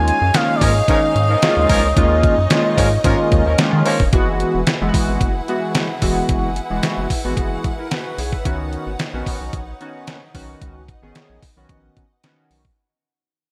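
A smooth, expressive sawtooth lead with portamento and vibrato opens this late-night, funky slice of early-eighties boogie funk, its chorused, slapback-echoed melody lasting only until about 3.6 seconds. A dark, punchy horn section in octave doubling joins at 0.6 seconds as a second line, sounding distant and roomy before it drops out around 4.0 seconds. Underneath, a glossy, up-front chorused polysynth with pulse-width modulation and filter sweeps carries the accompaniment, while a rich, lush bowed string section holds sustained chords with vibrato. A rubbery, nasal square-wave bass with a filter pluck and moving notch bounces below, paired with a detuned 8-bit drum machine whose thumpy kick, medium-tuned snare and hi-hat carry gated reverb and a tape-warm, small-room character. The harmony shifts through suspended ninth chords, and the music fades out from 4.1 seconds to the end of the cut, all under a light reverb.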